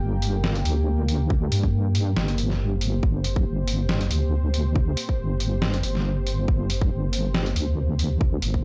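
Dry and gritty, with the top end rolled off, this brooding deep dubstep excerpt moves at 139 BPM in a half-time 4/4 feel with a light swing, resting on G minor throughout. A deep, detuned sawtooth wobble bass with chorus and saturation sits up front beneath a moody, evolving analog pad with a slow attack, a sub octave and its own chorus, while a pitched-down, compressed sampler-style kit brings hi-hat and a medium-tuned snare from 0.2 s. A tight, layered electronic kick joins at 1.3 s, sharing the kit's small room ambience.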